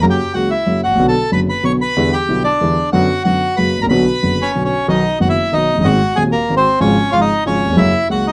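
Set in a flexible, rubato 3/4 at 186 BPM, this short tango passage, cut from a longer piece, carries an elegant, playful mood. A bandoneon leads the melody with a reedy, airy voice placed up front, ranging from A#3 to C#6. Beneath it, a dark grand piano supplies the accompaniment with a mellow, smooth, vintage tone, intimate and close, with the soft clatter of its action audible. The harmony opens in B minor, moving through Bm, Em7 and F#, then brightens into B major at 4.9 s, passing through G#7 and C#/G# before settling on F#. The dry sound of a small room suggests a close 1970s-style studio recording. Both instruments play together from the start, with the piano stopping at 8.2 s just before the bandoneon closes the passage at 8.3 s.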